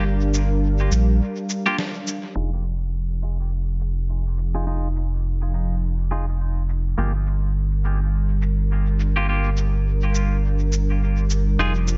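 A detuned sawtooth pad with chorus, clean hollow-body guitar stabs roughened by 12-bit sampler grit and dub echo, and a deep, round analog bass sitting up front open this hazy, spacious ambient dub excerpt. A muffled, sampler-style shaker and fat snare arrive at 0.3 s, trailed by their own dub echo, and a short break with a band accent follows at 1.2 s. From 2.4 s, filter sweeps move across the pad and the guitar over swung sixteenths as the chords shift from Gm7 to Fm7 and back.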